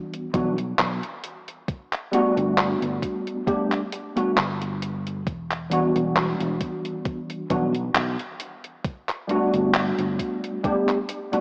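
Heard through a worn, warbling cassette tape with a small-speaker sound and a concert-hall reverb, this hazy, nostalgic vaporwave excerpt drifts at 67 BPM in E minor with a light swing, as a slightly out-of-tune tine electric piano with ensemble chorus and analog delay sways between Em7 and Gmaj7, joined from 0.1 seconds by a detuned 8-bit drum machine's handclaps and hi-hat, and from 0.3 seconds by a growly, punchy fretless bass with transformer saturation and lush chorus alongside a thumpy, sampler-style electronic kick.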